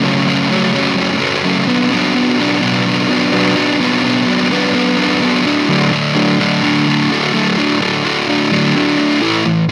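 Bittersweet and restless, this short rock excerpt at 128 BPM in straight 4/4 features a lone fuzz guitar, picked, distorted and double-tracked, sitting up front in light reverb from F#2 to D4 as it moves through F#m, Bm and D before landing on A5 at 9.2 seconds, tuned slightly low to A4 = 439 Hz.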